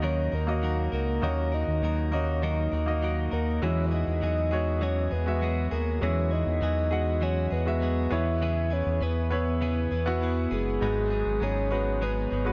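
A soft synth lead, layered in octaves with a sub-octave beneath it, opens this bittersweet, dramatic piano-driven pop excerpt alongside a grand piano, a clean electric guitar and an analog bass, all four sounding together from the start through 12.5 seconds. The lead carries the melody with a full-bodied, dark tone, touched by vibrato and chorus. Beneath it, the intimate grand piano plays the accompaniment, its natural sound including audible action noise, while the direct-recorded guitar adds a picked, compressed riff with a subtle chorus. The deep, detuned analog bass sits up front, its sawtooth, sine and triangle blend giving it a sustained, warm weight. The harmony moves from D#m to Eadd9 at 3.6 seconds, then through C#m7/E to G#m7, and a huge ambient reverb soaks the whole mix in a dreamy haze with a softened top end.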